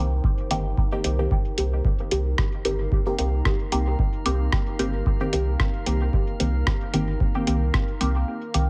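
A steady 4/4 pulse at 112 BPM, with a light swing on the sixteenths, drives this hazy, deep dub techno excerpt in C minor, resting on a single Cm7 chord. An analog-style electronic kick enters at 0.2 s and sits up front with a deep weight, as if re-recorded in a large room, before dropping away at 7.9 s. A muffled, pitched-down, sampler-style kit adds compressed hi-hat and rim clicks. Underneath, a round, soft sub bass holds the low end, while a muted, detuned chord stab with a filter pluck and short decay is colored by phaser and trailing dub echo. A moody, dark pad of detuned sawtooth and sine layers with a sub octave sustains the chord, thickened by chorus and reverb and breathing with sidechain pumping. From 2.3 s a calm, glassy texture of drifting overtones floats in the background, inside an echo-heavy mix with light reverb.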